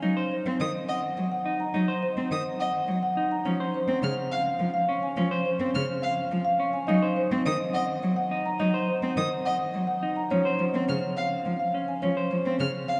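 Minimalist classical pattern music in Eb dorian at 105 BPM in 3/4, urgent yet hypnotic, where a mellow, round marimba with soft mallets carries the melody over a rich, bowed cello played close and up front with vibrato, a dark, clean electric guitar picks arpeggios, and a distant, expressive violin joins at 0.6 seconds with high arpeggios full of portamento, all alternating between Ebm and Db and washed in a vast, echoing cathedral reverb in this short excerpt.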